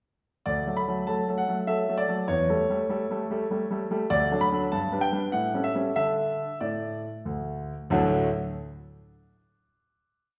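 Playful and graceful, this short, complete classical-period sonatina in D major moves at 97 BPM in a flexible, rubato 3/4. A clear concert grand piano plays alone from 0.5 to 8.3 seconds, pairing a single-line melody with repeated chords over a deep, open bass, and settles on a final D chord at 7.9 seconds. The piano rings out in a wet recital hall reverb, heard from further back in the room.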